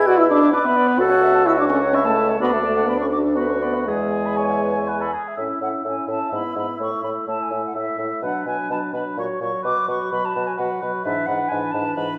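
A wet recital hall reverb surrounds this short cut from a longer classical-period movement for wind quintet, which moves quickly in 3/4 at 127 BPM with a rubato, spirited and graceful feel in A major. The concert flute carries the melody high in its range with an airy, tongued tone, expressive vibrato and a distant placement. The oboe sits up front with a mellow second line, and the bassoon holds the bass with light vibrato. The French horn and the warm-toned clarinet fill out the accompaniment, the horn also colored by a gentle vibrato. All five play from the opening to about 12.2 seconds, with a new section arriving at 5.4 seconds as the harmony turns from A toward B minor and closes on E7 over G#.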